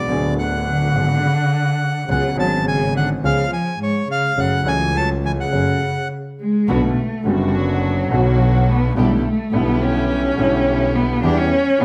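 A bowed cello, played by a single player with vibrato and portamento, stands out in this sultry, tense tango excerpt. It carries a second line from the start and then takes a solo from 6.7 s, when the music moves from F# minor to B minor. Over it, an up-front bandoneon plays the reedy, bright melody until 6.1 s. Beneath them, a warm concert grand piano gives smooth, vintage accompaniment with deep bass, while a rich double bass, bowed with a soft attack, vibrato and portamento, sits close underneath. In the second half, a distant section of muted strings adds dark, veiled stabs with light vibrato. The rubato feel moves around 105 BPM in 4/4, and a large studio reverb gives the sound a moderate sense of space.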